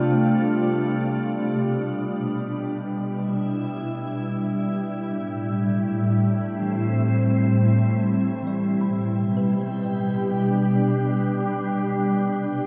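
Set in a straight, unhurried 4/4, this peaceful, luminous ambient passage is cut from a longer piece and floats in a huge, wet reverb space with a long decay. Up front, a glassy FM pad holds sustained chords throughout. Its slow attack and long release are softened by ensemble chorus, built-in reverb and shimmer reverb, which give it an ethereal glow. Beneath it, a vintage analog drone with a warbling, evolving sawtooth and pulse-width tone sits in the background with chorus, stopping at 5.2 seconds. The harmony moves from Dm7 to Em7, then turns to Am7 and G/B as a second section begins around 5.1 seconds. At 6.6 seconds a very quiet kalimba enters with woody, dark, ringing thumb-plucked arpeggios that carry on to the close.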